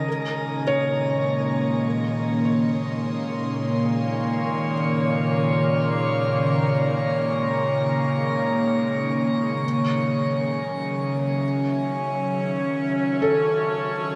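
An evolving wavetable pad, a felt-muted upright piano and a bowed-like drone open together in this serene ambient fragment, drifting in free time as the pad's bright, morphing chords glow up front through phaser, reverb and a filter sweep. The piano's soft, mellow arpeggios carry audible action noise and a vintage intimacy under delay, while the drone adds a tense, string-like tone with vibrato and ring modulation. A shimmering reverb with an 8.4-second tail bathes the sound as the harmony moves from Bbm7 to Gbm7 at 9.6 seconds.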